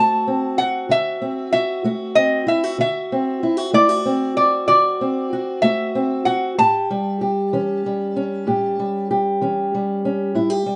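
A soulful, swaggering stretch of acoustic country blues in a slow 12/8 at 63 BPM opens with a metallic, nasal lap resonator guitar played with slide and fingerpicks carrying the melody up front, over a dark, woody, boxy parlour guitar fingerpicked on old strings. The harmony sits on D7 before moving to A7 at 6.6 seconds, and the resonator drops out at 9.1 seconds, leaving the steel-string accompaniment alone until 10.8 seconds. A light reverb gives the duo a touch of space in this short cut from a longer piece.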